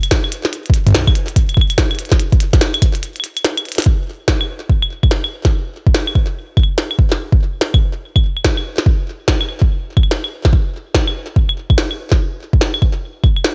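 A dry, up-front production carries this melancholic, intricate IDM fragment in a swung 4/4, where a deep electronic kick drum runs from 0.1 to 13.3 seconds beneath a glitchy drum kit of claves, clicky hats and a tiny snare touched with small room ambience and digital delay, pausing for a break at 3.0 seconds and a drum fill at 3.7 seconds before the second section begins at 3.9 seconds.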